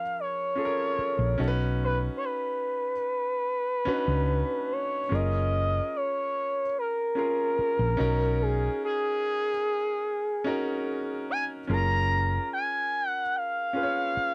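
Lush and warm, this short excerpt of 1970s-style soul unfolds at an unhurried pace in a straight four. A smooth sawtooth lead carries the melody from the very start, its gliding portamento, vibrato and chorus lending it an expressive, mellow voice that sits up front. Beneath it, a clear grand piano plays the accompaniment in an intimate, natural tone, with the soft sound of its action audible in the quiet. At about 1.0 seconds a round, dark hollow-body electric bass enters, fingered and amped, and stays prominent in the mix. The harmony drifts gently between lush major-seventh and ninth colours, and the dry, close studio sound is touched only by light reverb.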